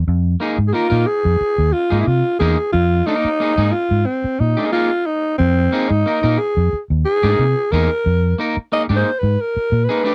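A breathy, raspy alto saxophone with vibrato solos up front over a dark, round, foam-muted fingered bass and a slightly broken-up, twangy electric guitar, all sitting on a single Fm7 chord in this hypnotic funk excerpt, which has the dry, close sound of a 1970s studio.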